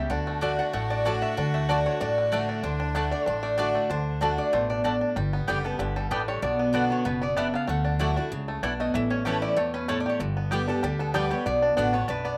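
A lively, rustic bluegrass piece at 191 BPM in D major opens with a nasal, metallic lap resonator guitar carrying a slide melody with slapback echo over a bright, up-front picked steel-string acoustic guitar, twangy banjo arpeggios and a woody, thumpy upright bass, while a distant, bowed fiddle adds a faint second line until 5.0 seconds and a double-strung mandolin, entering at 0.4 seconds, punctuates with stabs as the chords move from D through G, Bm and A in a dry outdoor sound.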